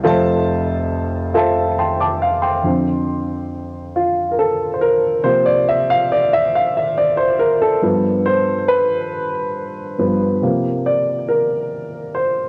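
Gospel in a slow, straight 6/8 at 46 BPM, this soulful, uplifting fragment in F major features a lone baby grand piano, dark and mellow yet natural, sitting up front across a range from F1 to D6. After opening on an Fmaj7 chord, the piano plays a fill from 1.4 to 2.7 seconds, then carries a solo through 12.5 seconds over F5, C7sus4 and G7 harmonies. Cassette tape coloring and tape echo give the piano a homespun character, set in light reverb and studio ambience.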